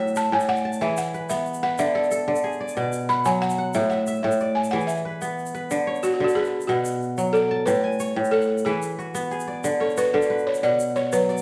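A ringing, crisp, fingerpicked kora sits up front with arpeggios, joined at 0.1 seconds by a grainy, close tube shaker and at 0.2 seconds by a woody, buzzing balafon played with soft rubber mallets, which takes a solo through 5.7 seconds, in a joyful West African traditional piece in 12/8 at 122 BPM in D lydian that cycles through A, E, D and B minor inside a wet recital-hall reverb.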